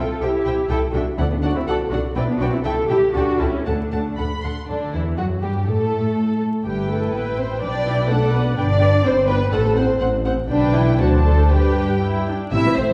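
From the first beat, a muted string orchestra plays a cheerful, lively classical-period movement in G major at 115-127 BPM in a rubato 2/4, with dark, close first violins carrying the melody over a veiled second violin line, lush violas, smooth-topped cellos with light vibrato and warm, up-front double basses, all con sordino and heard from further back in a wet recital hall through vinyl crackle, before a new section begins at 4.7 s.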